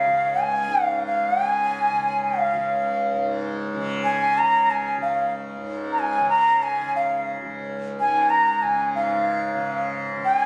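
Meditative and serene, this short clip cut from a longer Hindustani classical piece in 5/4 sets an up-front, breathy bamboo bansuri melody, reedy and bright with vibrato and tongued notes, over a softly plucked tanpura drone whose buzzing, shimmering tone sits well beneath it, with a new section arriving at 8.9 seconds, all heard through the moderate reverb of a recital hall, club ambience and compression of a phone recording made in the room.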